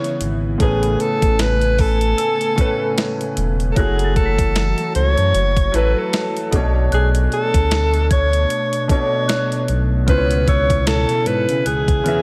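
A dreamy mix soaked in plate reverb gives this fragment of contemporary R&B a hazy, intimate glow, its mood sensual and full of longing. An alto saxophone carries the melody up front, warm and smooth on top with a pop-style vibrato, trailed by analog delay. Beneath it a clear grand piano accompanies with audible action noise and a touch of analog chorus, while a glassy FM pad holds dark, ethereal chords that pump through sidechain, ensemble chorus and its own reverb. A clean 12-bit drum machine sits forward over a swung 16th feel with a thumpy kick and medium-tuned snare, and a sawtooth-and-square synth bass with ring modulation and a fast attack enters at 0.2 s, sustained and prominent. Far in the background a worn, slightly out-of-tune celesta adds delicate bell-like tones through analog delay as the harmony moves from C#m7 through Amaj9, F#m7 and Bm9 back to C#m7.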